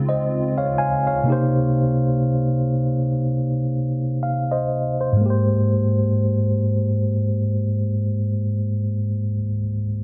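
Swung sixteenths at a slow 61 BPM in 4/4 carry this dreamy, smooth R&B fragment in Ab major, where an up-front, mellow tine electric piano plays clean accompaniment through Dbmaj7, Cm7 and Abmaj7, a hollow, flute-like pad with ensemble chorus sustains chords beneath it only until 1.2 seconds, and a filter sweep runs through the first 5.2 seconds of a lightly reverberant, low-pass-filtered, dense and heavily limited modern master.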